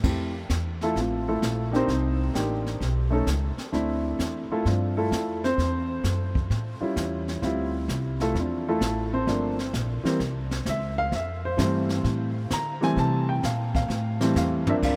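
An intimate upright piano, up front with audible action noise, solos through this relaxed, playful swinging jazz trio passage over a pizzicato upright bass with a dark, woody tone and a brushed drum kit with dark cymbals, a high-tuned snare and a boomy kick, the kit playing a fill from 13.9 s to 14.8 s, the trio heard in a vast, echoing space with a huge reverb.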